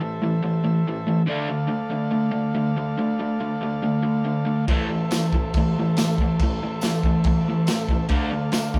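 Garage rock with a raw, menacing edge, this short cut opens on a picked, double-tracked electric guitar riff, overdriven and up front, over buzzy, lightly vibrato-tinged sustained chords from a vintage overdriven combo organ, before a gritty, saturated breakbeat kit with dark cymbals, a tight kick and a rolled-off top arrives at 4.7 seconds, joined by a jingly tambourine in the background and an organ fill at 7.5 seconds, the band heard playing together in one room with moderate reverb.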